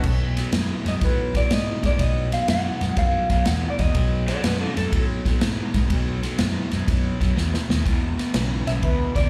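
A crunchy, bright guitar riff opens this soulful, rollicking electric blues shuffle alongside a round, foam-muted electric bass and a swinging big-band drum kit with a punchy kick and dark cymbals up front. At 0.9 seconds a slightly broken-up, lo-fi lead guitar with slapback echo carries the melody, and at 4.3 seconds a brief overdriven slide guitar line, also echoed, takes over before the melody guitar returns near the end. A drum fill arrives at 7.4 seconds, and the whole excerpt feels like a live club gig heard through the venue's PA, wrapped in a small-room reverb.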